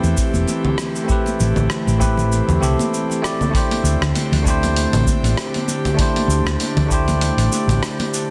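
A bell-like tine electric piano, bright and up front with a touch of vintage 12-bit sampler grit and delay, plays accompaniment in this relaxed sunset chillout excerpt at 98 BPM, floating over an airy, breathy pad whose chorused chords sustain on slow attacks and long releases. Underneath, a dark, round hollow-body short-scale electric bass gives a punchy, fingered low end and stops at 7.8 seconds. A dusty, sampler-style soul drum kit supplies hi-hat, rim click and shaker with a lightly clipped snare, all carrying a compressed, re-recorded-in-a-small-room character. Very quiet, damped congas with a thick, high-tuned skin add gentle color, while a deep, tape-flavored electronic kick enters at 0.2 seconds and drops out at 7.0 seconds. The groove swings on the sixteenths in 4/4, moving from Am7 to D7sus4 at 3.5 seconds, all set in a lush hall reverb with a dense, heavily limited modern finish.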